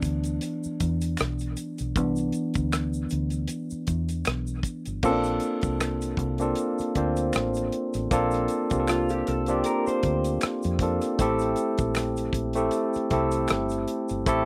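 A barky tine electric piano carries this relaxed, warm neo-soul R&B excerpt, its bright, lightly overdriven tone sitting up front as if through a combo amp, and it takes a solo over the opening 5.0 seconds. Underneath, a deep, round fingered electric bass with a dark, foam-muted punch holds down the low end, while a soul drum kit with a tight kick, dark cymbals and a rolled-off top plays crash, hi-hat, kick and rim clicks. A tube shaker and finger snaps sit quietly in the background. The groove moves at an easy 78 BPM in 4/4 with a light sixteenth-note swing, in a Bb lydian colour that passes from a rootless Cmaj9 to Bbmaj9 and then Am7. Between 8.9 and 11.0 seconds, a dark, slightly broken-up electric guitar through a small old amp adds a brief picked second line with a lo-fi slapback echo. The whole mix sounds very dry and open-air, with little reverb.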